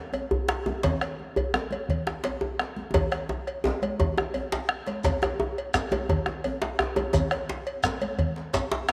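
Heard through the lush hall reverb of a home cassette recording, this short cut from a longer festive, powerful West African traditional drum ensemble piece moves at 114 BPM in a straight 12/8, with a round, up-front bombo, a dry metallic cowbell, a distant deep djembe with metal rattles, high-tuned thick-skinned congas and a tight, cracking second djembe moving through a drum fill from 2.9 to 5.0 seconds, when a grainy shekere joins in the background.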